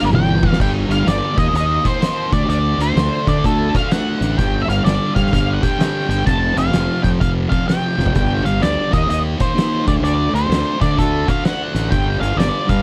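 Brooding and heavy, this excerpt of blues rock and southern rock moves at 127 BPM in 4/4 with a swung eighth-note feel, sitting in G minor. A thick, double-tracked fuzz guitar carries the riff up front across the whole clip over a progression of G5, Eb5, D and F5, while a dark octave-fuzz lead guitar, also up front, plays the melody high above it. Underneath, a fingered electric bass with overdrive and fuzz adds a growly low end. The oversized, low-tuned drum kit comes in at 0.1 seconds with a fill, brings a fat snare, boomy kick, toms and dark cymbals, and plays another fill at 7.9 seconds. The sound is dry and close in a 1970s-style studio manner, with the saturated, gritty drums framed by a bright stone-room character.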